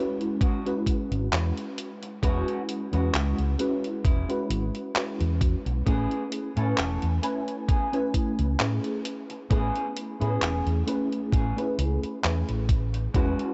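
A soft, round FM electric piano with phaser, chorus and delay sits up front in this dreamy, woozy vaporwave excerpt at a slow 66 BPM with a light swing, moving from E6/9 to Amaj9 at 5.9 s while a clean, dark electric guitar riff shimmers through lush chorus and 12-bit grit, a detuned 8-bit drum machine ticks out tape-softened handclaps and hi-hat, a thumpy electronic kick pushes forward, and a punchy, amped fingered bass enters at 1.1 s, all under a light reverb with the highs dulled.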